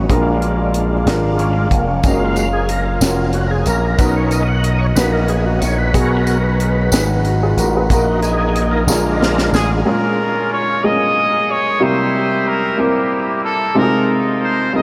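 In a straight 6/8 at 62 BPM, this fervent, soulful slow gospel opens with a gritty, overdriven tonewheel organ soloing through a fast rotary speaker over a baby grand piano with lush chorus, a mellow, distant French horn section holding chords, a punchy slap bass with an envelope filter, a tight funk drum kit with a high-tuned snare that plays a fill at 8.9 s, and a jingly tambourine in the background from 2.0 s, before a warm horn section with delay takes the melody at 9.5 s over the continuing piano, the whole mix dreamy and soaked in huge reverb.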